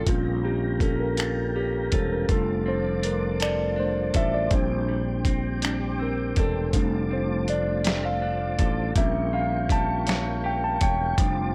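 A mellow tine electric piano takes the lead from the first moment in this sensual, intimate slow R&B excerpt at 54 BPM in 6/8, moving through Bbm6, F6 and Bb69 chords tuned to A4 = 445 Hz. A growly fretless bass sits up front beside it, while a smooth tonewheel organ holds sustained chords through chorus vibrato and a slow rotary speaker with a touch of key click, and a clean, picked electric guitar adds a soft second line bathed in spring reverb. From 0.1 seconds a gritty, compressed sampler-style soul kit, overdriven and re-recorded in a small room, sets a thumpy kick, medium-tuned snare, hi-hat and finger snaps beneath a light digital ambience.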